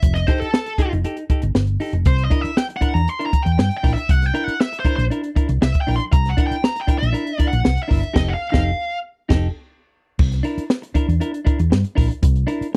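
A distorted, high-gain lead guitar carries the melody in a strutting, playful funk solo, picked high over the band until it drops out at 9.0 seconds. Beneath it, a hollow-body short-scale electric bass sits up front with a dark, round, amped tone, while a compact cocktail drum kit adds a punchy kick, a high-tuned snare, hi-hat and dark crash cymbals. A clean electric guitar, bright, twangy and compressed, picks its accompaniment from 0.3 seconds, moving between F9 and C9 chords. The band hits an accent from 8.2 to 10.2 seconds before a new section begins on C9, and the excerpt is cut from a longer piece. The sound is dry and close, a 1970s-style studio recording in a small room.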